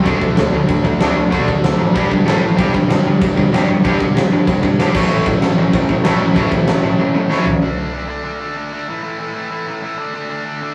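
Punk rock at 190 BPM with a rowdy, upbeat drive, this short cut from a longer piece opens with three overdriven guitars riffing over power chords: an up-front cranked stack guitar, a distorted electric guitar and a biting, double-tracked guitar, the latter two sitting in the background beside a growly, punchy picked bass. A big acoustic drum kit, dark and smooth with a fat snare and punchy kick, pushes the riff. The bass bows out just before a drum fill at 7.3 seconds, after which the kit and the two other guitars drop out and the distorted electric guitar carries on alone to 10.7 seconds. The sound is a rough rehearsal-room recording with light studio reverb.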